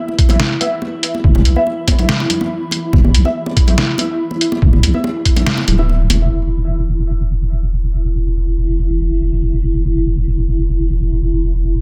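A dark, wobbling sub bass with a chorused, detuned sine-and-triangle tone sits up front from 1.2 s in this cavernous, meditative deep dubstep excerpt at 142 BPM in half-time, over an E5 chord, joined by a gritty, pitched-down, thumpy sampler kick and a compressed trip hop kit with a medium-tuned snare and low-passed hats, bright high-tuned congas echoing distantly in a large room, and muted sawtooth dub chord stabs with phaser, chorus and echo, until the drums and stabs fall away by 6.2 s, leaving the cloudy, evolving granular pad, present from the start with a slow attack, to carry on with the bass to 11.8 s.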